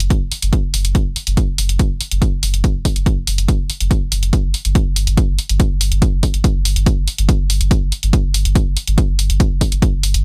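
A dry sound frames this hypnotic, dark slice of driving peak-time techno, cut from a longer piece. A tape-warm analog electronic hi-hat runs from the very start, and a punchy analog electronic kick drum sits up front from 0.1 s. Underneath, a deep, round sine sub bass with a fast attack and sustained notes hovers low and forward, its overdrive, low-pass filtering and sidechain pumping giving the groove a heavy, breathing weight.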